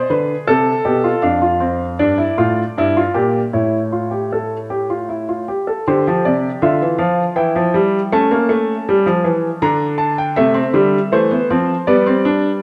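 Solemn and contemplative, this short cut from a longer baroque-style three-part fugue in 3/4 features a solo baby grand piano, warm, open and up front with long sustain, ranging from F2 to Bb5 and moving through chords like Dm, Gm and A7 in a moderate recital hall reverb.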